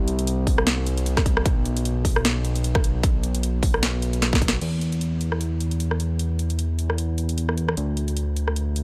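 This future bass excerpt opens straight into a lush, euphoric drop, with a fat, detuned sawtooth bass sustaining between B1 and E2, pumping from sidechain and shaped by a filter sweep, tuned to A4 = 435 Hz. A trap kit of sharp snare, bright hi-hats, rim clicks and crash sits up front with a tape-warm sheen, swung half-time at 152 BPM in 4/4, while a punchy, layered electronic kick re-recorded in a small room drives the groove from 0.5 s to 4.5 s. A drum fill carries the track into the second section at 4.6 s, where bass and kit continue inside a digital ambience.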